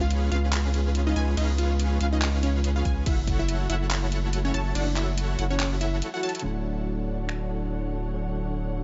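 A bright, playful future bass excerpt cut from a longer piece, set in a digital ambience whose top end stops around 7.7 kHz, moves at 142 BPM in a half-time feel with a light swing on the sixteenths, in D major. The drop runs from the opening to 6.4 seconds, where a lush, wave-folded unison pluck carries the melody with sidechain pumping and delay, while a second, brighter pluck sits in the background playing arpeggios. Underneath, a huge, detuned supersaw riff pumps through a low-pass filter, a saturated sine sub bass sits thick and up front, and a very quiet dark chamber string section holds bowed, vibrato-laden chords. A pop drum kit with metallic hats, finger snaps, handclaps and crash cymbal drives the groove with studio reverb, joined briefly by a punchy layered electronic kick around 2.9 seconds, and a short break and drum fill close out the drop. At 6.4 seconds the harmony settles from the C#7 and F#m7 of the drop onto Dmaj7, and a mellow, clean, fingered electric guitar takes over the accompaniment with sidechain pumping and delay alongside the strings, supersaw and sub bass.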